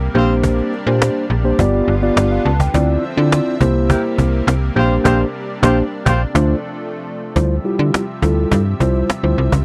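Danceable and funky, this short cut of early-eighties boogie funk moves at 104 BPM in D minor, with a snappy, metallic slap-like FM bass and a close, dry cajon played with hard hands sitting up front beside a mellow tine electric piano, all over a lush, detuned unison pad with chorus held softly underneath. A mellow horn section with light vibrato and octave doubling sounds distant and roomy, appearing briefly at the start and again from 3.9 to 6.2 seconds, while the full band hits accents between 5.1 and 7.4 seconds before a new section arrives on a Dm11 chord. The sound is that of a dry, close 1970s-style studio with little reverb.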